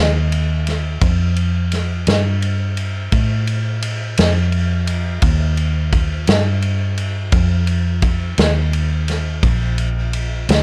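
A slow blues in 12/8 with a straight feel, this short excerpt is cut from a longer piece and carries a soulful, rollicking mood. A vintage muted electric bass, played with the fingers, opens at the very start and holds the low end between Bb1 and A2, its amped tone dark, round and foam-muted, placed up front. The drum kit enters at 0.3 seconds, an acoustic set heard in a natural studio room with a punchy kick, a medium-tuned snare and ride cymbal, also sitting up front. A light reverb surrounds the pair, and the recording has the character of worn old cassette tape, with a warbling pitch drift running through it. Both parts play together through to the end at 10.6 seconds in a single continuous section.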